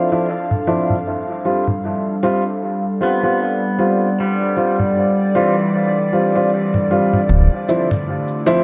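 A moderate spring reverb gives this short, hazy ambient dub excerpt a deep, spacious sound at a slow 77 BPM in 4/4, with a gentle swing on the sixteenths. From the start, an airy, breathy pad with chorus holds sustained chords up front while a dark, woody upright piano drops mellow stabs into a dub echo, moving from Dm9 to G7sus4. Tape-soaked electronic toms and shaker, re-recorded in a large room and muffled by low-pass filtering, keep a soft pulse underneath. At 3.0 seconds a clean, compressed pedal steel guitar enters with fingerpicked arpeggios, slide and volume swells, itself filtered and sent through dub echo. At 7.3 seconds the harmony returns to Dm9 as a round analog bass lands one sustained low D, the loudest element in the mix, beside a very quiet electronic kick drum.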